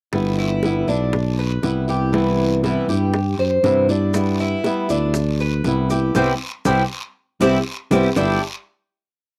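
Warm and danceable, this short Cuban son and guajira piece rides a montuno vamp between G6 and Cmaj7 before settling on a final chord at 8.2 seconds. An up-front mellow tuba plays a punchy tumbao bass with scooped notes and light vibrato that anticipates the chords, under a fingerpicked flamenco guitar strummed with muted slaps and a metallic, double-strung Cuban tres picking an arpeggiated guajeo. Tight, high-tuned bongos in steady eighths and a raspy guiro drive the groove, grainy maracas join in the background at 4.1 seconds, and a band accent with a drum fill leads into the close, heard in a dry, close 1970s-style studio sound with light reverb.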